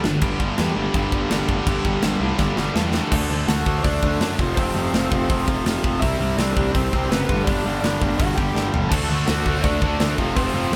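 An up-front tight metal drum kit with bright cymbals and a tight kick powers this energetic, upbeat punk rock excerpt at 166 BPM alongside a bright, double-tracked overdriven electric guitar riff and a growly fuzz picked bass, while a distorted high-gain heavy guitar sits in the background until 3.1 seconds and returns at 8.9 seconds, a dark lead guitar through a small cranked amp takes the melody from 3.1 seconds, and the band plays live in one room with light reverb and drum fills leading into the change.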